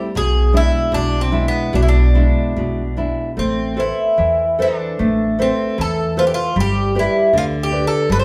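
Nostalgic and tender, this short fragment of a fado-style ballad moves freely in 2/4 as an up-front Irish bouzouki carries the melody with a metallic, picked double-string tone over full-bodied, fingerpicked nylon-string guitar and a woody, dark pizzicato upright bass, the trio playing live together in a large studio bathed in wet reverb through chords of E7/B, Amadd9 and G.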